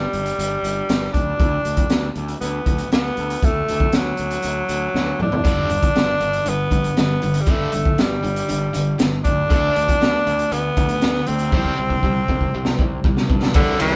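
A straight 4/4 classic rock groove at 118 BPM in G major drives this sunny, confident excerpt, where a raspy, forceful tenor saxophone carries the melody up front over a growly fuzz bass and a gritty garage drum kit with a boomy kick and dark cymbals, joined at 5.4 seconds by a bright, double-tracked overdriven guitar riff, with drum fills near 4.9 and 11.5 seconds and the band sounding live in one room.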